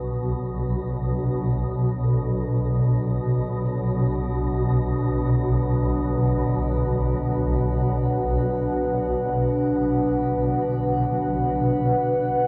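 This dark ambient drone piece, cut from a longer work, carries a dark, desolate mood in a vast, echoing space with a long cathedral reverb. Up front, a swarming drone holds low and tense, its detuned, granular tone evolving as it sustains. A deep, moody pad fades in over the first 12.0 seconds, holding sustained chords with sub-octave weight, chorus and shimmer reverb. Very quietly beneath them, a gamelan-type bronze metallophone plays soft arpeggios with padded disc mallets, its paired tuning producing shimmering beats within a boxy small-room sound. At 12.1 seconds a bubbling, resonant texture slips in, sitting in the background with random filter steps.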